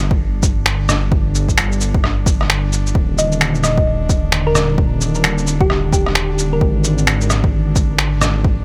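A rumbling, detuned saw bass pumps beneath an airy, breathy pad in this nocturnal, ghostly future garage excerpt at 131 BPM with a 16th-note swing, driven by a punchy overdriven kick and muffled, tape-toned shaker, finger snaps and rim click, while a round, tine-like thumb-piano-style pluck with chorus, phaser and tape echo drifts in from 3.2 to 6.7 seconds as the chords move from G5 to an Ebmaj7 with its third omitted inside a digital ambience.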